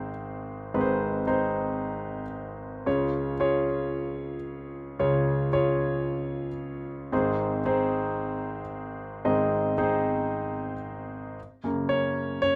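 A straight 4/4 pulse at 113 BPM carries this short, uplifting pop fragment, cut from a longer piece and tuned to A4 = 439 Hz. A concert grand piano plays alone throughout, spanning Ab1 to Eb5, with a clear, intimate tone, deep bass and long sustain; it sits up front, and the mechanical noise of its action is audible. The harmony moves from Ab to Db at 2.9 seconds, returns to Ab at 7.1 seconds, then shifts to Gb at 11.4 seconds as a new section opens and runs to the end at 12.6 seconds. A wet studio ambience with a half-second reverb tail surrounds the polished, present instrument. The overall mix has the rough character of a home demo, yet the hopeful mood comes through plainly.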